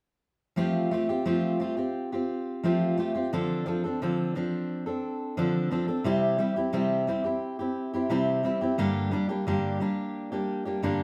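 Carefree and sunny, this pop instrumental moves at an easy 88 BPM in 4/4 with a straight feel in F major. A fingerpicked steel-string acoustic guitar carries the accompaniment from 0.6 s to 11.0 s, its full-bodied jumbo tone sitting up front as it moves through Fadd9, Dm7, C and Gm. A wet studio reverb and a live-room feel surround the playing in this short cut from a longer piece.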